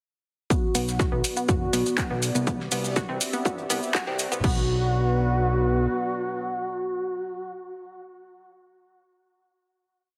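Heavily compressed and thinned at the bottom like a radio broadcast, this short, complete melodic techno piece sits in a small room with a light touch of reverb, and its mood is hypnotic and dark. A build-up runs from the start until 4.4 seconds, carried by an overdriven, four-on-the-floor electronic kick out front, a layered techno kit with filtered open hats, handclaps, mid toms and a crash, a very quiet, dry breakbeat loop from a damped 70s kit with a fat snare, and grainy, close maracas shaking sixteenths. Underneath, a thick, saturated analog bass plays a dotted rhythm with sidechain pumping. A round, nasal pluck repeats a 16-step arpeggio through chorus, phaser and dub echo, while a detuned sawtooth lead with vibrato and a moving notch states a repeating riff under a filter sweep, with delay and subtle chorus. A deep, moody pad with a slow attack fades in early and, together with the lead, holds the final chord until 7.5 seconds, after the drums and pluck have dropped away.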